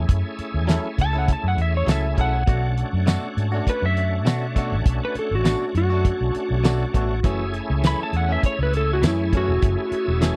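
An electric slide guitar carries the melody and solos throughout this mournful, brooding soul blues, entering at 1.0 seconds with a dark, slightly broken-up, compressed tone that sings in a high register. Beneath it, a tonewheel organ holds a full, shouting accompaniment colored by chorus vibrato and a slow rotary speaker. A vintage electric bass plays with a round, punchy, foam-muted sound and sits up front. A damped 70s drum kit with a fat snare, tight kick, rolled-off top, hi-hat and tambourine drives a straight-eighth groove with a light swing on the sixteenths. A clean, twangy electric guitar, recorded direct and picked bright, adds stabs from 0.7 seconds, while the harmony moves between two minor-seventh chords. The whole recording has a dry, close 1970s studio sound with little reverb, and it is cut from a longer piece.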